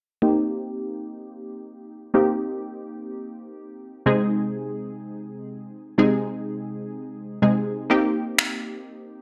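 Confident and energetic, this dance-pop excerpt moves at 125 BPM in C minor, built on a punchy, full-bodied synth chord stab whose detuned sawtooth and square-wave tones carry a chorused sheen and a plucky filter edge, with a filter sweep running across it from 0.2 to 7.9 seconds. The stab shifts from Cm7 to Ab/C before returning to Cm7 as a new section begins at 7.9 seconds, and a brief burst of overdriven, layered electronic finger snaps sits up front at 8.4 seconds. A moderate digital room reverb lends the sound some space.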